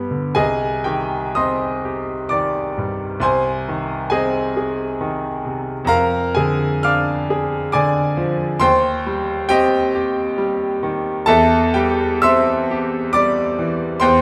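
A bright grand piano carries this brief romantic character piece on its own, its brilliant, natural tone sitting up front and spanning a range from C2 to F6. The music is lyrical and passionate, moving in a rubato 3/4 at roughly 57-70 BPM in C minor, with the instrument tuned slightly high to A4 = 441 Hz. Harmonies unfold from C minor through Ab/C, Ddim/F and Cm/Eb before turning to a C major chord over E near 11.3 seconds. A wet recital hall reverb, with a decay of about 1.5 seconds, surrounds the playing with a sense of space. The passage is cut from a longer piece, ending at 14.2 seconds.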